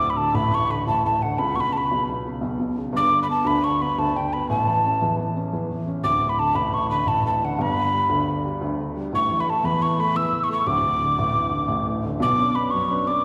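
An airy, hollow metal whistle carries a tongued, vibrato-touched melody with a soft chiff over a woody upright piano whose action noise sits close and intimate, giving this bright, cheerful Celtic folk fragment in 9/8 at 116 BPM a straight, steady feel, both parts playing together from start to finish under a wet church-like hall reverb.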